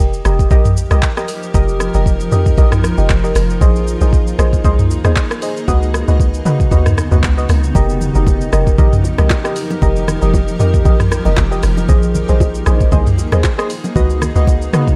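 This late-night amapiano cut opens with a punchy, tight log drum bass sitting up front alongside a smooth, produced R&B kit of soft kick, warm hats, handclaps, rim click, shaker and toms, all moving at 116 BPM in 4/4 with a gentle 16th-note swing. Deep, mellow chord stabs arrive at the same moment, their dark, evolving tone shaped by a filter sweep and colored by chorus and tape echo. From 0.6 seconds a granular cloud pad fills in beneath them, a blurred, detuned haze with a slow attack, long release and its own reverb. The harmony cycles through suspended ninth chords on F, Bb and Db, giving the passage a deep, floating quality. Bright, close congas and bongos slip in very quietly at 7.7 seconds, adding a dry acoustic texture before dropping out at 14.6 seconds in this section taken from a longer piece.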